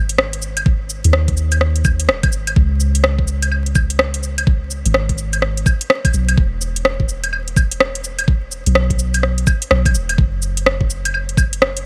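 The rhythm swings its sixteenth notes at 62% in a steady 4/4, giving this future garage cut a loose, shuffling gait. A garage drum kit enters at 0.1 seconds with metallic hi-hats, cabasa, claves and rim clicks, sounding layered, produced and tape-warm in a small room. An electronic kick drum joins at 0.7 seconds, knocking and close in the same small room. Beneath them, a soft 808-style bass plays from 0.0 seconds to 11.9 seconds. Its deep, round sine tone has a fast attack that decays into darkness, and it pumps against the sidechain. A digital ambience of vinyl crackle drifts over the drums and bass, which sit up front, and the mood is wistful and nocturnal through this cut from a longer piece.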